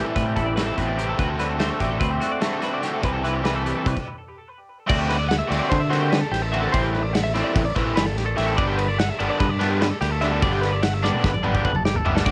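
Set in a straight-feeling 9/8, this short cut of math rock and Midwest emo moves with a bright yet wistful restlessness. A twangy twelve-string electric guitar spins chiming arpeggios up high through cassette tape and analog delay, while an overdriven, double-tracked semi-hollow guitar sits up front with a hollow-bodied riff. A clean picked electric guitar, shimmering with ensemble chorus, adds accompaniment only until 4.0 seconds, just before a brief stop in the band. Underneath, a bright, direct fingered bass and a loose indie kit with a tight kick, dark cymbals and a pumping small-room sound drive the chords from Am9 through D9sus4 to Gadd9, ending on a drum fill at 11.0 seconds. The whole home cassette recording carries a light reverb and a lo-fi, tape-worn character.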